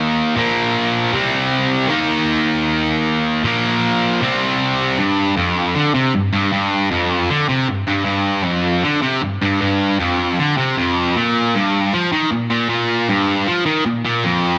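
A distorted electric guitar opens the recording alone and carries it to the end at 14.6 seconds, playing driving, aggressive rock in G minor at 155 BPM in a straight 4/4. The guitar sounds bright and picked, double-tracked and compressed, sitting up front in the mix across a range from F2 to Eb4. Its power-chord moves run Bb5, C5 and Eb5 through the opening stretch, then a new section from 5.0 seconds settles on G5 before shifting to Bb5 at 11.2 seconds. A large studio reverb adds a digital ambience around the part, and the dense, heavily limited master keeps the sound thick and forceful. The passage is cut from a longer piece.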